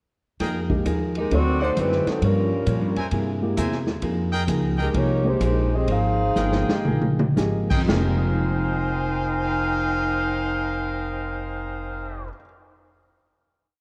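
A swinging 4/4 pulse at 112-133 BPM drives this short, sultry and dramatic big band piece in F minor. The swinging big-band drum kit plays a ride cymbal pattern with a punchy kick and rolled-off top, adding a fill at 6.4 seconds before it stops at 8.0 seconds, while the upright bass walks beneath with a woody, thumpy pizzicato tone up front. The dark saxophone section carries the melody from 1.2 seconds in hook-like phrases harmonised in four-part block voicing, its vibrato heard in a roomy, distant space. Brilliant trumpets add syncopated stabs in close voicings, the background piano offers mellow rootless comping with audible action noise, and the clean hollow-body guitar strums jazz chord shapes at a low level. The tempo slows from 4.0 seconds, leading to a final chord held from 7.9 seconds, all set in a moderate concert hall reverb and coloured by worn, warbling old cassette tape with drifting pitch.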